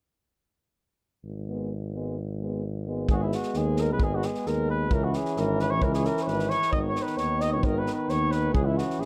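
Fiery and virtuosic, this excerpt of Balkan brass band folk moves at 132 BPM in a straight 2/4 in G# minor, with a tuba carrying the bass from 1.2 seconds and two euphoniums, one clear and one warm and set further back, adding light-vibrato accompaniment from 1.5 seconds. At 3.1 seconds a mellow flugelhorn takes the melody up front with vibrato and tape echo, joined by a natural acoustic drum kit with a punchy kick and a medium-tuned snare, as the harmony moves between G#m and C#m. The brass sounds distant and roomy in a classical style, while the close, detailed recording adds only light reverb.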